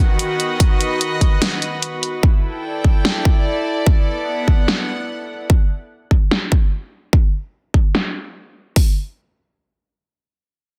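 An excerpt of chaotic, aggressive heavy wobble dubstep at 147 BPM in a half-time feel opens with a lush, detuned supersaw pad holding sustained chords until 2.2 seconds over a dark, reedy bowed string section with a gut-string tone that pumps under the sidechain until 5.5 seconds, while two layered electronic drum kits, recorded up front in a small room, drive the groove, one entering at 0.2 seconds and pairing hi-hat with a huge, low-pass-filtered snare and the other joining at 0.6 seconds and pairing hi-hat with a punchy kick, beneath a filter sweep on the drums and a dense, heavily limited master with light reverb, as the chords move from B through Em and Bm before dropping out at 5.5 seconds.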